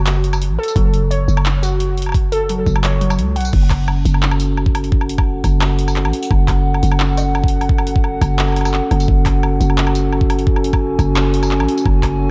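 A warbly, lo-fi pluck with chorus and tape echo spins arpeggios over a growling, buzzy 808-style bass at the start of this dark, tense half-time drum and bass drop, cut from a longer piece. An overdriven kit of bright hats, crash, handclaps, tambourine and woodblock joins, with a knocking, overdriven electronic kick from 0.8 seconds. At 3.5 seconds the pluck gives way to a deep, moody, detuned analog pad that pumps against the sidechain, all set in a dreamy mix soaked in plate reverb.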